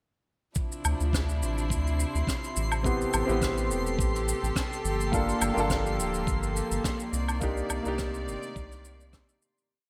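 A round, deep analog bass sits up front in this short, warm and wistful sunset chillout piece in D minor at 105 BPM, playing a syncopated riff beneath sul tasto chamber strings holding sustained chords, a gritty, thumpy electronic kick, and a light lounge beat of brushed shaker, woodblock and rim click with gated reverb. A twinkling granular texture holding a high C6 enters at 1.1 seconds, and an intimate baby grand piano with audible action noise and delay joins at 2.8 seconds with rootless held chords and syncopated pushes as the harmony moves from Dm9 through Am9, Gm9 and Cm9. The bright 1980s-style digital production, with plate reverb and a small room, fades out from 6.7 seconds to the end at 9.7 seconds.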